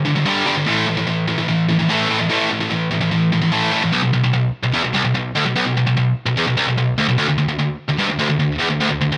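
This metal excerpt, cut from a longer piece, sits in a digital ambience with a relentless, epic mood. A lone high-gain electric guitar plays throughout, bright, distorted, picked, double-tracked and up front. It moves from G5 to A5, shifts into a passage free of chords at 3.9 seconds, and lands on D5 at 7.2 seconds.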